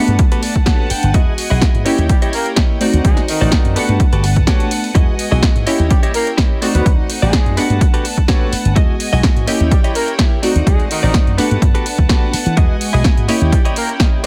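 Sunny and feel-good, this 126 BPM filtered disco house excerpt with a light 16th-note swing rides a looping Gmaj9, Emaj9, D#7b9 and D7b9 progression. An up-front, overdriven electronic kick and a punchy analog drum machine with pumping hats anchor a bright, amped slap bass through an envelope filter, a funky detuned polysynth comp with chorus, phaser and 12-bit sampler grit, a clean direct-recorded electric guitar riff with brief fills, and a rich, floating violin section bowed with a soft attack in the background. Everything but the kick pumps to the sidechain, while a clear, close-miked horn section enters at 2.1 seconds to carry the octave-doubled melody with delay, all in a digital ambience.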